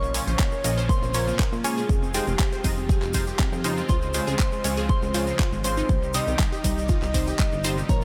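Expansive and dreamy, this progressive house excerpt in a straight four-four moves through Bbm, Fm7, Dbmaj7 and Cm, with every melodic part and the bass breathing under sidechain pumping. A round, full-bodied octave-layered lead with vibrato, chorus, phaser and delay carries the melody beneath a pure FM bell line, an evolving supersaw swell holding chords in the background, a detuned unison pluck spinning arpeggios with a moving notch and a nasal pluck firing phased stabs. Underneath, a dark, wave-folded analog bass and an up-front punchy kick anchor the groove, joined by a pop kit's handclaps and warm hi-hats and a grainy egg shaker, all set in a digital ambience.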